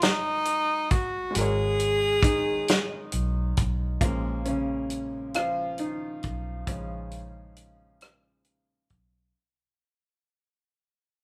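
Yearning and sultry, this slow six-eight R&B fragment at 45 BPM, tuned to A4 = 435 Hz, opens on G#m9 with an up-front, breathy tenor saxophone carrying a jazz-style melody with vibrato, soft attacks and scooped notes until 3.1 seconds, over a clear, intimate grand piano with audible action noise, a dark, round, foam-muted vintage electric bass, and a tight, mid-forward soul drum kit of hi-hat, kick, rim click and snare, before the piano takes a solo over A#m7 from 4.0 seconds as the band, playing live together in one room with light reverb, fades out.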